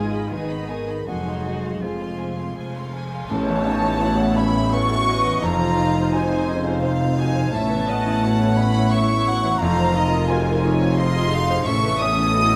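Uplifting and tender, this cinematic film-score passage, cut from a longer piece, moves in a rubato 3/4 at 86 BPM: a dark, woody solo cello sings the melody until 2.9 s while a violin section carries it higher with floating sul tasto tone, a hollow concert flute and a second violin line weave above, a lush viola section, an intimate grand piano with audible action noise, mellow French horn chords and a very quiet ringing harp fill the middle, bowed double basses and cellos hold the bass, and a close, dry tam-tam sounds from 3.3 to 6.1 s under a full-band accent, all set in light reverb with detailed close miking.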